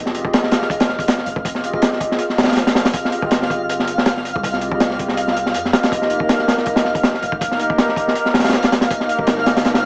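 Drum and bass with a jungle edge at 161 BPM in F minor, this nostalgic, raw passage cut from a longer piece sets an up-front, crunchy breakbeat kit of hi-hat, punchy kick and high-tuned snare, gritty and dark with a rolled-off top, over a deep, decaying sine 808-style bass with tube saturation sitting in the background, while a bright, twinkling granular texture with an octave-up shimmer and its own reverb glints above, moving from Fm9 to Eb at 5.9 seconds, all under a moderate plate reverb, vinyl crackle and a small-speaker tone.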